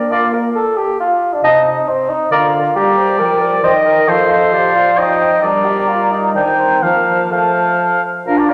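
Classical-period wind quintet movement, cheerful and lively in a rubato triple metre, where an airy, hollow-toned, tongued flute carries the melody above a warm, up-front oboe second line, a soft-attacked clarinet sits in the background, a distant, mellow French horn fills out the accompaniment, and a forward bassoon with light vibrato carries the bass, inside a wet recital-hall reverb.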